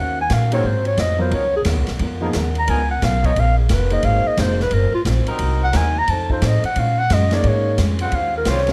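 Swinging and energetic, this big band jazz excerpt at 177 BPM in Ab mixolydian features a dark, breathy clarinet soloing up front with vibrato and scooped notes over a woody pizzicato upright bass, a swinging drum kit with punchy kick, an intimate concert grand piano with audible action noise, a background fingerpicked steel-string guitar, and tight trombone section chords that drop out at 5.9 seconds and return at 8.0, all in a moderate recital hall reverb.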